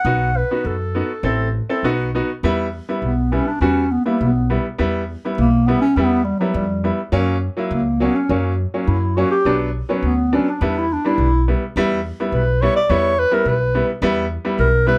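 A straight 2/4 klezmer pulse gathers speed throughout this festive, bittersweet fragment cut from a longer piece. Up front, a dark, close-miked clarinet carries the melody as a jazz-style solo full of vibrato and scooped notes, bathed in plate reverb. Beneath it, a pizzicato upright bass gives thumpy, gut-string warmth, and a brilliant, woody upright piano with short sustain accompanies from 0.1 seconds, all in a small room.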